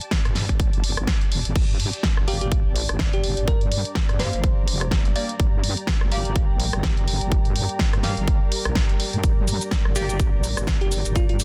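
Swaggering and gritty, this bass house excerpt in G minor at 125 BPM with a swung 16th feel rides a punchy, up-front electronic kick, a big-room drum kit with a huge snare, crash, hi-hat, rim click and shaker, and a heavy, saturated wobble bass, while an ethereal pad fades in from the start, a nasal band-passed chord stab and a sparkling bell-like FM electric piano enter at 2.3 seconds, and a moody analog pad sits in the background from 2.7 seconds, several parts pumping against the kick in a dense, heavily limited, dry mix.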